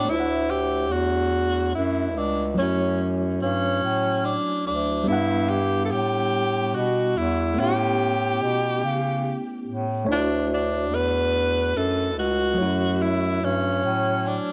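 A moderate plate reverb with a 2.5-second tail surrounds this short cut from a longer R&B piece. Set in a slow 6/8 at 48 dotted-quarter beats per minute with a straight feel, the mood is sultry and yearning. A breathy tenor saxophone carries the melody from the start, present and up front, its clear subtone shaded with vibrato and scooped notes in a jazz style. Beneath it, a worn, slightly out-of-tune tine electric piano supplies clean accompaniment through its built-in speakers, while a bass clarinet with a soft attack and a roomy, classical-style tone anchors the low end. The harmony moves through Dmaj9, F#m7, Em9/G and A9 before returning to Dmaj9 and F#m7, with all three parts sounding until about 14.5 seconds.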